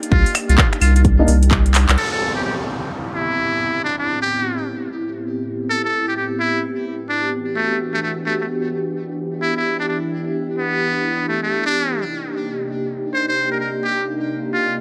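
A buzzy, brilliant trumpet with a metal mute carries the melody in a jazz style through this bouncy, moody two-step garage cut, its thin tone sitting up front with light vibrato, scooped notes and a digital delay trailing behind. Beneath it, an airy, breathy pad holds sustained chords with chorus and sidechain pumping, moving from Cm9 to Am9, Em9 and back to Cm9. The opening bars are driven by a punchy electronic kick, a deep, saturated sub bass and a tape-warm house kit of metallic hi-hats, claves, finger snaps, handclaps and crash cymbal, with a brief stab from a dark, mellow grand piano echoing through its own delay. A drum fill and a band accent close this opening, and at 2.0 s the beat drops away as an electronic downlifter descends and a filter sweep begins on an analog synth pad. From there the trumpet and pad carry the rest of the passage in a light reverb until the clip ends at 14.8 s.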